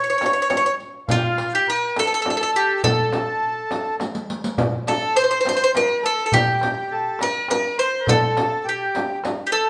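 A steady 6/8 pulse at 69 beats per minute, counted in dotted quarters, carries this festive yet stately passage of Arabic maqam ensemble music in A maqam saba. Up front, a bowl-back mandolin takes the melody with a bright, picked sound from its doubled strings, while an accordion sits a little further back with a reedy, full second line in the same register. Darbuka, frame drum and riq enter at 0.2 seconds. The metal-shell darbuka sounds crisp under soft hands, the small frame drum is struck with hard hands and has a vintage, band-limited tone, and the riq's jingles glitter in the background. A drum fill at 4.0 seconds leads into the second section, and the darbuka and frame drum fall away at 9.4 seconds as the passage, cut from a longer piece, draws to its end. The group plays live together in a large studio with moderate reverb, giving a rounded sound with a soft top end.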